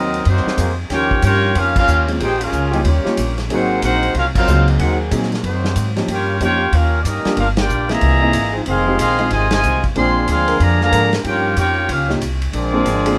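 Brassy and joyful, this big band swing excerpt puts a mellow, vibrato-rich trumpet section up front on the melody over a soft-attack trombone section's second line, a woody, thumpy upright bass, and a vintage drum kit with dark cymbals and a punchy kick in a small, pumping room, while a bucket-muted trombone section holds veiled chords in the background from 0.6 seconds, an intimate grand piano with audible action noise joins at 2.1 seconds, and the band hits shared accents under light reverb.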